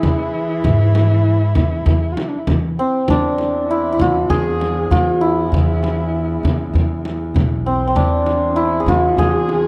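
A dry, close 1970s-style studio sound with light reverb frames this stately, passionate Persian modal piece in E dastgah homayun, moving at 98 BPM in a straight 4/4 and cut from a longer work. An up-front, shimmering hammered santur carries the melody between C4 and B4, joined by a distant, dark and woody bowed kamancheh second line with vibrato and portamento, while an intimate, soft-attacked chamber cello section holds E3 until 2.5 seconds. Underneath sit a growly pizzicato upright bass on steel strings, a deep tombak played with soft hands and a large, roomy frame drum, and from 3.1 seconds a clear, intense bowed double bass drone on E2 joins in the background.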